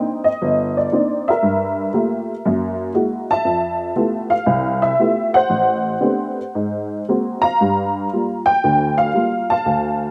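A swung eighth-note lilt in 4/4 moves with a loose, rubato give, setting a smoky, moody tone for this short solo jazz passage cut from a longer piece. A lone honky-tonk upright piano carries everything for the full 10.1 seconds, its detuned, jangly voice sounding vintage and woody, with a boxy edge. Placed up front, the piano spans from a deep G1 up to Bb5, and a slapback echo trails its notes. The harmony drifts through rich extended chords, opening on Cm9 and passing through F#9 and Fmaj9#11 before settling on Gm7. The sound is dry, captured outdoors with little reverb and tuned to A4 = 441 Hz.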